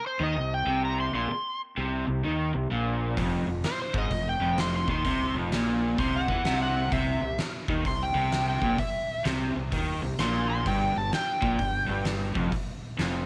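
Heard in a small room with light reverb, this raunchy, swaggering excerpt of blues rock and southern rock struts along at 128 BPM in 4/4 with a swung eighth-note feel. A double-tracked, picked garage guitar grinds out the low riff over a growly fuzz bass, while an overdriven slide guitar sits up front with a bright melody over chords moving from Bbsus24 through Fm7 and C7. At 3.2 seconds an oversized, low-tuned acoustic kit arrives in a pumping stone room, its fat snare and punchy kick saturated and gritty.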